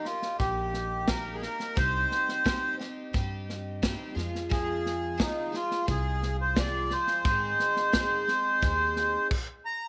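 A reedy, airy accordion melody sits up front over a shimmering, octave-doubled picked twelve-string acoustic guitar from the start of this hopeful, anthemic indie folk excerpt at 88 BPM, tuned to A4 = 435 Hz. A natural country drum kit with a punchy kick, medium-tuned snare and crash cymbal joins at 0.1 seconds, and a woody pizzicato upright bass enters at 0.4 seconds, all moving through Eb, Cm, Fm and Ab in light reverb and studio ambience before the band stops at 9.3 seconds.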